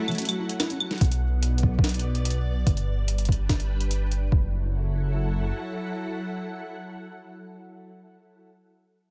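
The recording sounds dry, with little reverb, in this glitchy, intricate IDM cut from a longer piece, moving at 145 BPM in a straight 4/4 around F# phrygian. It opens with a brief break where a bowed cello with smooth vibrato and a felt-muted upright piano playing boxy, mellow arpeggios both flicker past through tape echo. A soft string machine holds silky, vintage chords under everything through 8.4 seconds, blurred by ensemble chorus. A gritty, pitched-up jungle sampler-style kit of claves, hi-hat and snare sits up front, and at 1.0 seconds a deep, rumbling detuned saw bass with tube saturation joins an overdriven electronic kick. A filter sweep moves across the bass until 4.3 seconds, as the chords pass from F#m7 through Bm and G back to F#m7.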